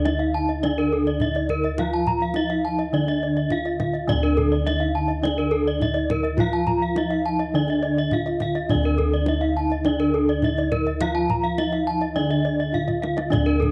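This excerpt opens at once with the full Balinese gamelan: a bronze metallophone carrying the melody around D4, a lower metallophone accompaniment, an arpeggio metallophone, and bossed gongs sounding the bass. The kendang joins at 0.1 seconds, and a second arpeggio metallophone enters at 0.2 seconds. The mood is hypnotic and brilliant, moving at a steady 104 BPM in a straight 4/4 in D pelog. The melody metallophone, struck with padded disc mallets, sounds mellow and soft with a boxy small-room colour, while the gongs are round and dark. The accompaniment uses a horn mallet and has a dark, smooth edge. One arpeggio part also uses a horn mallet with a warm, boxy small-room colour, and the other is played with a wooden mallet. All four metallophones ring with the shimmering beats of paired tuning. The close, deep kendang plays a fill from 12.7 to 13.3 seconds, and the ensemble sits in a moderate spring reverb with small-room ambience.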